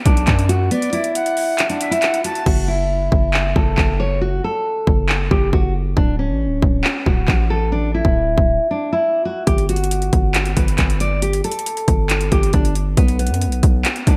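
Eerie and melancholic, this half-time trap excerpt moves at 137 BPM in 4/4, set in F# phrygian with a tuning of A4 = 442 Hz. A fingerpicked nylon-string guitar carries the melody up front, its full-bodied classical tone softened by a low-pass filter and marked by audible finger squeak. Beneath it, a distorted 808-style bass hits with a fast attack and decaying, saturated sine tone layered with noise, while the trap drum kit brings a hard-clipped kick, metallic hi-hats, handclaps and crash cymbal under gated reverb. An airy, reedy concert flute with vibrato and delay appears briefly from 0.7 to 2.5 seconds, during a break, and the hi-hats drop out from 2.5 until 9.5 seconds. The chords move from Bm to F#m7 and Dmaj7(no3), pass through a chordless stretch, and settle on B5, all within a bright 1980s-style digital production with light reverb.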